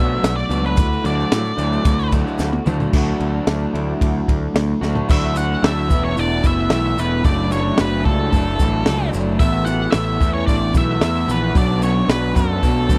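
A jangly, carefree indie rock passage at 111 BPM in a straight 4/4, cut from a longer piece and tuned slightly flat of standard pitch. It opens with an octave-fuzz lead guitar taking a dark, distorted solo with tape echo over a crunchy overdriven guitar riff dressed in lush chorus and echo, while a twangy guitar through a small old amp picks a slightly broken-up part in the background. A growling, overdriven picked bass sits up front beside a compact cocktail drum kit with a punchy kick, high-tuned snare and dark cymbals, which enters at 0.2 seconds along with a grainy, distant tube shaker, and drum fills mark the turns into each new passage. From 5.1 seconds a barky tine electric piano adds a clean, very quiet second line through a combo amp as the harmony moves from Bm7 and Dadd9 toward Asus2 and back to Bm. The sound is dry and close, in the manner of a 1970s studio recording, with little reverb.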